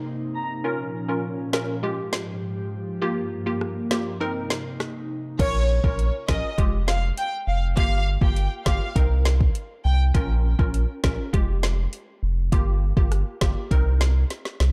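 Dancehall in F minor at 101 BPM with a sultry, tough mood, this excerpt opens on a crisp, detuned wavetable chord stab with phaser and an airy, breathy pad under a filter sweep, with a brief touch of violin at 0.3 seconds, before the electronic afro-pop drum kit enters at 1.5 seconds with its deep kick, woody snare and metallic hats. At 5.4 seconds a round analog bass arrives and the expressive, vibrato-rich violin section melody returns as the pad drops out, all set in a dark digital ambience and closing with a drum fill over a looping Cm7, Bbm, Fmadd9, Gm7 progression.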